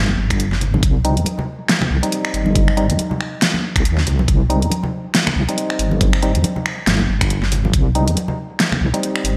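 Lush hall reverb and a bright 1980s-style digital production give this dark, cavernous deep dubstep excerpt in C minor a roomy sheen at 139 BPM, felt in half-time with a swung 16th-note lilt. A compressed, sawtooth-and-sine wobble bass with chorus sits up front from the start, and bright acoustic congas played with soft hands drift in through dub echo at 0.1 seconds. At 0.3 seconds an overdriven, knocking electronic kick arrives alongside a layered kit of finger snaps, hi-hat and a huge, gated-reverb snare. From 1.0 seconds a hollow, organ-like stab with a noise layer adds percussive, decaying hits treated with chorus and dub echo.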